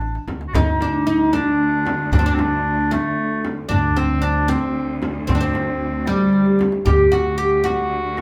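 Melancholic and soulful, this Arabic maqam ensemble piece in 6/8, cut from a longer work, features a woody, up-front fretless oud carrying the melody over a soft-attacked vintage clarinet second line, a growly pizzicato upright bass, a crisp metal-shell darbuka and a deep frame drum in the background, with a lush bowed cello section entering at 0.5 s to hold a drone, drum fills at 0.0 s and 6.3 s, and the band playing live together in one room under a large studio reverb.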